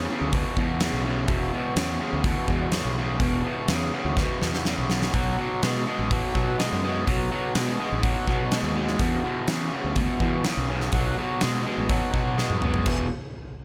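A straight 4/4 pulse at 124 BPM drives this brooding, smoky excerpt of blues rock power trio and southern rock, with a huge arena drum kit entering at 0.3 seconds, its punchy kick, fat snare and bright cymbals sitting up front and breaking into fills at 4.2 and 12.4 seconds. A raw, overdriven garage guitar, double-tracked and picked, lays down a riff that moves between E5 and B5 power chords, while a growly fretless electric bass with ensemble chorus anchors the low end. The sound is dry, with little reverb.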